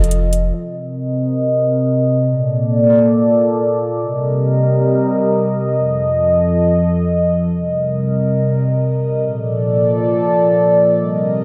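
A sweeping, resonant pad of sawtooth and triangle tones, wave-folded and treated with chorus, phaser and a low-pass filter, dominates this hazy, spacious hip hop fragment, its slow-attack chords evolving under a filter sweep from 0.5 s to 11.4 s. A deep, boomy 808-style bass with a sine body and a noise layer sounds only at the opening, decaying by 0.5 s under an F7 chord before the pad moves through Cm7, Bbmaj7 and F7. The dreamy mix is soaked in a lush hall reverb that gives the passage a floating, unhurried air.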